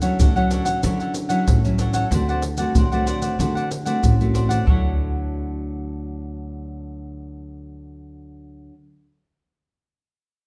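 A straight 4/4 pulse at 94 BPM drives this sunny, festive slice of samba and choro in D major, carried at first by maracas, pandeiro and a deep surdo that sound close, dry and up front before they drop out at 4.8 seconds. The upright bass is played pizzicato on gut strings, giving a woody, thumpy low end from start to finish. The nylon-string guitar sits up front in the accompaniment, fingerpicked in a classical manner on fresh strings, with finger squeak audible. Above it, the cavaquinho adds a crisp, bright picked accompaniment. The harmony moves from Dmaj9 to D7 at 2.1 seconds, then returns to Dmaj9 as a second passage begins at 4.7 seconds. The room is a large studio with a wet reverb, heard from further back, and the clip is cut from a longer piece.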